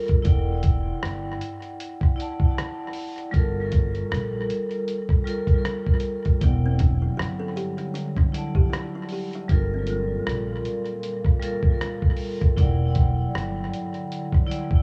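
A swung 4/4 groove at 78 BPM drives this nostalgic, reflective lo-fi hip hop piece in E minor, cut from a longer track, where a gritty, muffled sampler-style drum kit with a thumpy kick, hi-hat and rim click sits up front over a woody pizzicato upright bass and a dark, ringing hard-mallet vibraphone with filtered tape echo, joined at 6.4 seconds by a hollow, plucked kalimba melody and a warbling, detuned, chorused pad, the whole set in an echo-heavy small room as the harmony moves between Em9 and Gm9.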